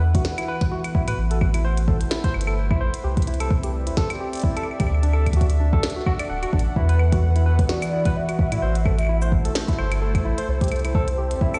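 A detuned, warbling pad of lo-fi sustained chords opens the excerpt alongside a round, sine-like sub bass that sits deep and up front, the pad carrying chorus, its own reverb and a sidechain pumping. Almost at once a bright, barky tine electric piano joins with arpeggios, lightly overdriven through a combo amp and trailed by digital delay. Underneath, a soft, tape-warm electronic kick sits alongside a glitchy kit of tiny snare, clicky hats, cabasa and claves on a swung 16th-note feel, with studio reverb on both and delay on the kit. At 6.8 seconds a nostalgic, mellow lead enters with vibrato, ensemble chorus and delay, floating over the returning Esus2, Am and C6 of the Esus2, Am, C6, D progression. The whole excerpt has a cerebral, melancholic IDM mood, heard as if played on a big system in a bare stone room with a dulled top end.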